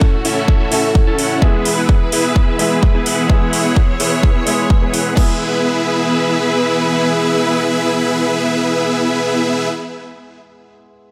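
A driving pulse at 128 BPM in straight 4/4 opens this euphoric, anthemic festival progressive house passage in E major, cut from a longer piece. A punchy, tape-warm electronic kick sits up front until 5.3 seconds, joined from 0.2 seconds by a house kit of crash cymbal and metallic hi-hats re-recorded in a small room. The lead is a huge, thick supersaw riff, detuned and in unison with a sub octave and vibrato, pumping through a low-pass filter that sweeps across the opening 5.2 seconds and trails a digital delay. Beneath it a clear, lush symphonic string section holds bowed chords with a smooth top, also pumping, while a boxy concert grand piano with deep bass and long sustain plays accompaniment in the background, its delayed notes lingering until 11.1 seconds after the strings and synth stop at 9.7 seconds. The harmony moves from A to E, and a moderate hall reverb of about 2.0 seconds gives the whole mix a spacious, festival-scale glow.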